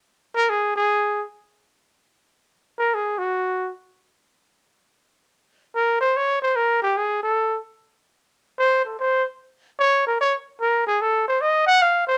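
A breathy trumpet carries this cool, late-night jazz excerpt alone, playing in a swung 3/4 at 148 BPM. Its tone is whispered and intimate, with a soft attack, light vibrato, scooped notes and a smooth top, sitting up front between Gb4 and Gb5. The trumpet sounds from 0.4 to 3.7 seconds, pauses, then returns at 5.8 seconds and carries through to the close at 12.2 seconds. A light reverb gives the solo a touch of space. The passage is cut from a longer piece, and the lone horn keeps the mood cool and late-night.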